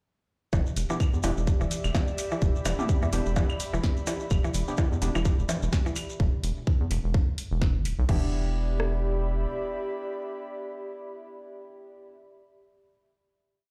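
A quirky, cool minimal techno piece at 127 BPM in E minor opens at 0.5 seconds on an Em7 drop, with a tight four-on-the-floor kick and rim clicks from an up-front garage kit, a rubbery, hollow square bass rolling in staccato, and a woody, mallet-like pluck cycling a six-step loop that drifts against the bar through chorus, phaser, delay and sidechain pumping. Around it sit a punchy analog drum machine with overdriven snare, hats and crash, overdriven blips, claves, low bongo and mid tom in cross rhythm with tape echo, grainy hand-played maracas in sixteenths, and an airy, breathy pad of slowly shifting chords, all under a 57% swing. Sparse, organ-like stabs move one shape in parallel through lush chorus and tape echo, returning at 8.1 seconds for a final chord as the pad holds until 12.4 seconds in a large, reverberant room.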